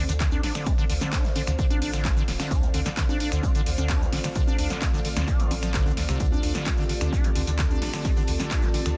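Acid house at 130 BPM in D minor, this hypnotic, gritty cut from a longer piece holds on a single Dm7 chord as a squelchy, resonant square-wave acid bass riff with lush chorus and tape echo rides over a round sine sub bass thickened by tube saturation, while a warbling, lo-fi tape-like pad sustains chords in the background and an airy, breathy pad with ring modulation adds texture, all of them pumping against the sidechain. Up front, a punchy analog electronic kick drives the groove, joined by a tape-toned drum machine playing congas, finger snaps, handclaps, hi-hat and a soft-clipped snare re-recorded in a large room. Grainy, vintage maracas and a very quiet, polished acoustic jazz kit with hi-hat, snare and tambourine add detail, all inside a dry, dense and heavily limited modern master.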